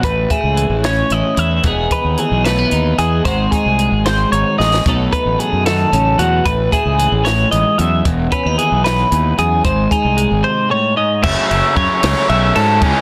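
Math rock and Midwest emo in a lilting 6/8: a clean, warm twelve-string electric guitar with analog chorus picks out the accompaniment while a second twangy twelve-string, touched with subtle chorus, weaves intricate, bright arpeggios above it. A growly, punchy fuzz bass sits up front, and a compact cocktail drum kit with dry dark cymbals, a tight kick and a high-tuned, softly clipped snare plays a fill at 4.6 seconds. At 11.2 seconds a raw, double-tracked garage guitar bursts in with an overdriven riff, all set in a concert-hall reverb and a dense, heavily limited master.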